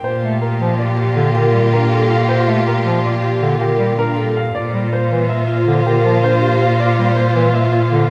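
Set in the reverberant wash of a concert hall, this hypnotic, propulsive minimalist pattern piece in 6/4 pairs a clear, open grand piano melody with an airy alto flute line and focused bowed strings, over a smooth, prominent solo cello bass and a vintage-toned bass clarinet in the background, while a metallic, ringing vibraphone with fast motor vibrato joins with arpeggios at 1.0 seconds as the harmony moves from Gm9/Bb to C9sus4/Bb.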